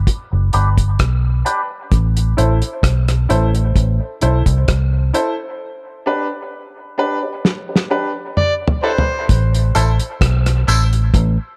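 Hypnotic and heavy, this short cut of dub reggae moves at 65 BPM in A minor, resting on a foam-muted, round, punchy electric bass and a cloth-damped drum kit with a fat snare and tight kick, both up front, while a worn, woody, slightly detuned upright piano stabs through dub echo and filtering over a G to Am progression, with a filter sweep running throughout. An envelope-filtered electric guitar sits in the background in brief spots, a drum fill arrives at 7.4 seconds, and a gritty, overdriven harmonica with tongue slaps and scooped notes takes a short solo at 8.4 seconds. From 9.5 seconds a very quiet, flute-like tonewheel organ with slow rotary swirl joins, followed at 9.7 seconds by band-limited tambourine and woodblock carrying dub echo, under a light reverb.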